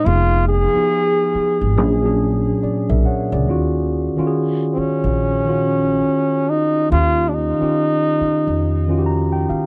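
A dry, close 1970s-style studio sound with light reverb frames this sultry, late-night neo-soul R&B fragment, where a clear, vintage French horn sings the solo melody with light vibrato, a soft attack and tape echo over a mellow, clean tine electric piano and a dark, woody pizzicato upright bass, all up front, as the harmony moves from Fm7b5 through Bb7alt and Ebm9 to Eb9 and the electric piano slips in a brief fill at 8.6 seconds.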